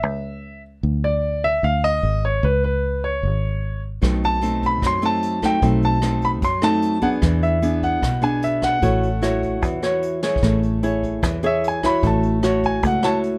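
Bossa nova at 150 BPM in A major, this short cut from a longer piece has a sophisticated, breezy mood and a straight 4/4 feel. A clear concert grand piano carries the melody from the start, its natural tone sitting up front, while a fingered electric bass, round and foam-muted with a direct, amped sound, holds the low end alongside it. At 4.0 seconds a fingerpicked nylon-string guitar joins with a small, warm accompaniment, the most prominent part in the mix, and a vintage brush drum kit enters with brushes on snare, hi-hat, kick and rim clicks, sounding distant and roomy with a rolled-off top. The harmony moves through a B7b9, E7 and A6 before a drum fill at 10.2 seconds leads into a new section where the piano takes a solo from 10.4 seconds, landing on F#m7/A. The recording is dry, with little reverb, keeping the piano, bass and guitar close and present.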